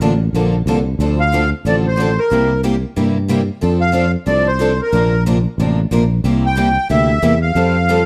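A moderate studio reverb surrounds this short slice of acoustic string swing, with the accordion and fretless bass sitting up front. Set in F major at a brisk 183 BPM in 4/4 with a swung eighth-note feel, it has a charming, playful mood. Two picked steel-string acoustic guitars carry the accompaniment from the start, both boxy with a parlour character, one with fresh strings and the other set further back in the background. A sustaining fretless electric bass plays underneath, growly and amped, while the accordion enters at 1.2 seconds with a reedy, sweet melody, its light tremolo tuning adding a gentle shimmer to a dark, smooth tone. The harmony moves through Bbmaj7, Dm7, C7 and F6 before settling on Fadd9 near the close.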